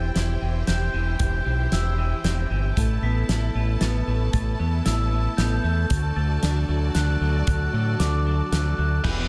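A melancholic, cathartic post-rock passage in 3/4 opens with distant, biting bowed strings holding chords over a clean picked electric guitar and a mellow, bell-like glockenspiel, both trailing delay, while a growling overdriven bass sits punchy and up front, moving through C/E, Asus2 and D. A loose drum kit with a fat snare and a rolled-off top enters at 0.2 seconds in a small, lightly reverberant room. At 9.0 seconds a drum fill arrives as a tight, bright distorted guitar riff cuts in briefly just before the cut.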